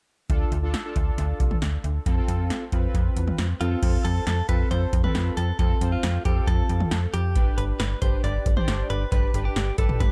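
A straight 4/4 pulse at 136 BPM drives this cool, nocturnal synth-pop excerpt. A dry electro analog drum machine sits up front with a deep kick, punchy snare, metallic hats, crash and toms, beside a snappy, digital slap-like FM bass with a fast, decaying attack. Behind them, fat, detuned sawtooth analog synth brass holds sustained tones colored by a filter sweep, chorus, vibrato and analog delay over a Dm, F and G progression. At 3.6 s a clean, compressed, direct-recorded electric guitar enters with a picked melody through analog delay, all within an echo-heavy mix carrying little reverb.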